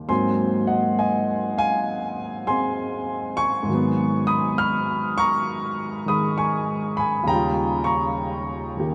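Solo jazz at 67 BPM with a playful, swinging 4/4 feel, this brief fragment of a longer piece features a lone grand piano, intimate and up front with audible action noise and long sustain, spanning Eb2 to F6 through Ab9, Abm7 and Eb9 chords, all bathed in a huge, wet reverb with a 7.1-second tail that suggests a vast, echoing space.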